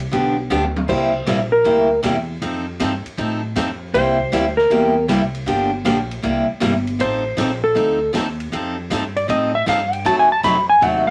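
Country western swing at 157 BPM with a down-home, swinging mood, cut from a longer piece: a woody, thumpy pizzicato upright bass and a big-band drum kit with a punchy kick and medium-tuned snare swing beneath a bright, picked acoustic guitar with audible finger squeak, while after a brief drum fill a dark, clean lap steel takes an up-front slide solo from 0.9 seconds over changes moving through C7, F7 and Gm7, all in a small, natural-sounding room.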